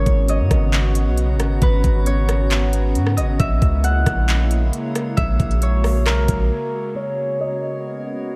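A mellow, ringing Celtic harp melody, softened by a low-pass filter and tape echo, opens this hazy, spacious cloud-rap fragment in G# minor over a warbling, nostalgic pad that pumps against the beat, a deep sine 808 bass, and a glassy texture of drifting overtones in the background, all moving from G#m11 to A#m7b5 at 135 BPM in a half-time feel. An up-front, overdriven trap kit with a knocking kick, crisp hats, handclaps and rim clicks drives the groove until 6.4 seconds, and once the bass also falls away at 6.5 seconds a brief break follows. A filter sweep from 7.0 seconds carries the harp, pad and glass texture back to G#m11, all bathed in a dreamy cathedral reverb.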